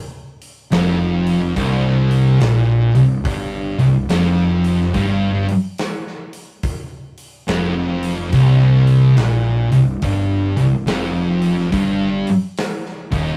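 Hypnotic, brooding stoner and doom metal excerpt in C minor at a slow 71 BPM with a swung 4/4 feel, where a big rock drum kit with a tight kick, medium-tuned snare and rolled-off top enters at 0.4 seconds, and at 0.7 seconds two thick, dark, distorted fuzz guitars take up the C5 riff up front over a growly overdriven fingered bass in the background, all in a rough rehearsal-room sound with moderate reverb.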